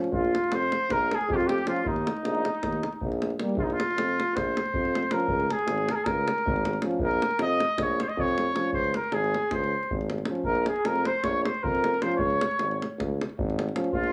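Recorded at home on cassette in a small room with light reverb, this short cut from a longer Balkan brass band piece in a straight 9/8 feels wild and virtuosic. A warm, distant cornet with light vibrato and a cassette tape colour carries the melody up front, while a punchy, mellow flugelhorn plays a second line in the background from 0.1 to 3.2 seconds and returns at 10.5 seconds. Beneath them, a clear, vintage tuba holds the bass up front, a mellow euphonium and a French horn supply accompaniment, and a deep, close, dry davul drives the percussion throughout.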